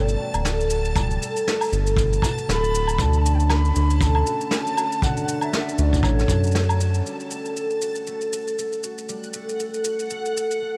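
A gently swung sixteenth-note groove of brushed shaker, woodblock and snare with a punchy kick drum carries this delicate folktronica excerpt, where a breathy, distant wooden flute with vibrato and tape echo sings over ringing, thumb-plucked concert harp arpeggios, a round, deep analog bass sits up front, and a reversed, granular swelling texture glows brightly high above, until the kick, flute and bass fall away by about 7 seconds to leave harp, texture and the brushed percussion in a dreamy, reverb-soaked haze.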